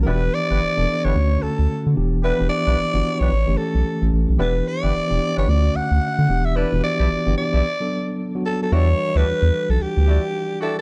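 A growling, breathy alto saxophone takes the up-front melody from the start, its raspy subtone, scooped notes and light vibrato riding over mellow tine electric piano chords and a deep, round analog bass that sits forward with a fast attack. This is a bouncy, slick R&B cut at 111 BPM in E dorian with a 16th-note swing, moving through Em7, Dmaj7 and A7 before a break at 7.6 seconds on D6 and a turn to Em9 at 8.7 seconds. A smooth-topped horn section adds jazz-style stabs in octaves from the background, all wrapped in a dark studio sound.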